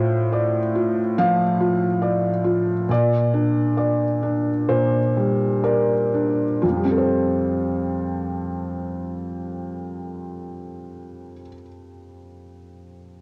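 Rubato phrasing in 4/4 drifts between 59 and 74 BPM, slowing down through the first 6.6 seconds of this brief classical fragment in F major, cut from a longer piece. A felt-muted upright piano carries the accompaniment alone from 0.0 to 13.2 seconds, spanning F2 to F5, its tone soft, mellow and smooth with a thin felt layer giving it a vintage, up-front presence. The harmony moves from Dm7/A to Gm/Bb at 2.9 seconds, then settles onto Fadd9 as a new section begins at 6.6 seconds. The mood is intimate and tender, like a private moment at the keys. Light reverb and the gentle character of a home cassette recording, with tape coloring the piano, add to the homely, nostalgic feel, and the tuning sits slightly high at A4 = 445 Hz.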